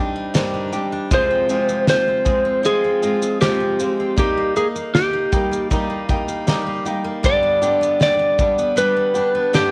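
Wistful and reflective, this short acoustic pop excerpt moves at a relaxed 78 BPM in a straight 4/4, cut from a longer piece. A bright, fingerpicked flamenco guitar and a full-bodied jumbo steel-string acoustic playing picked arpeggios, with audible finger squeak, open together, joined at 0.3 seconds by a loose indie drum kit whose punchy kick, fat snare and shaker sit up front in a pumping studio room. At 1.1 seconds an electric slide guitar takes the melody, played with fingerpicks, compressed and slightly broken-up, standing forward in the mix. The harmony drifts from Cmadd9/G through Fm and Eb/G before settling on G. Light studio reverb gives the whole a gentle sense of space.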